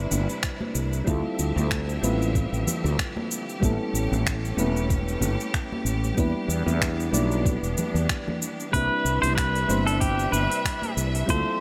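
A mellow, lightly reverberant sunset chillout excerpt at 94 BPM with a relaxed swing, where round, chorused electric-piano-like synth keys with digital delay and lush, bright bowed strings hold chords over Cmaj9, Dm11, A7 and Em7, a growly fretless bass sits up front, a tape-warm R&B kit with metallic hats, cabasa and finger snaps plays alongside a soft electronic kick and quiet ringing congas, and a clean, compressed pedal steel guitar with tape echo enters at 8.7 seconds to carry the melody.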